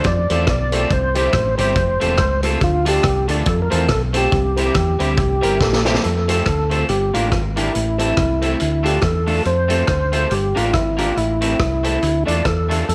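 A lightly overdriven tonewheel organ carries the melody in this joyful, upbeat ska cut from a longer piece, its fat tone colored by chorus vibrato, audible key click and a slow rotary speaker. Underneath, a fingered electric bass sits up front with a dark, round, punchy sound, while a vintage drum kit plays hi-hat, kick, rim click and snare with a saturated, gritty character, a tight kick, a rolled-off top and a touch of tape echo. An electric guitar at the edge of break-up supplies bright, twangy picked accompaniment, also treated with tape echo, and a detuned, jangly honky-tonk upright piano adds stabs from the background starting at 0.3 seconds. The tune moves at 140 BPM in 4/4 with a light swing on the eighth notes, in F major, shifting from F, C and Dm in the opening section to a new passage through Gm and Am. A drum fill at 5.6 seconds leads into that second section at 6.0 seconds, and the whole band sits in a small room with light reverb.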